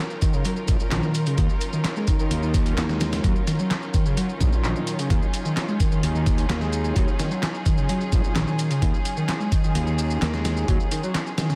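A rich, bowed string section opens at 0.0 s, holding smooth sustained chords over an Eb minor ninth harmony while sidechain pumping makes the ensemble breathe in time. Almost at once, dry analog electronic shaker and handclaps set in a small room appear alongside a dusty, sampler-style soul drum kit that arrives up front with a thumpy kick, medium-tuned snare and hi-hat. A barely audible electronic downlifter slips by near the start. A screaming, guitar-like synth lead carries the riff in a low register, its sawtooth and square-wave tone distorted and gritty, thickened by subtle chorus, tape echo and vibrato. From 0.7 s a dark, round fuzz bass played with the fingers sits up front, overdriven and growling. This funky, energetic breakbeat excerpt runs at 129 BPM in a straight 4/4, cut from a longer piece, with a moderate studio ambience and a dense, heavily limited modern master.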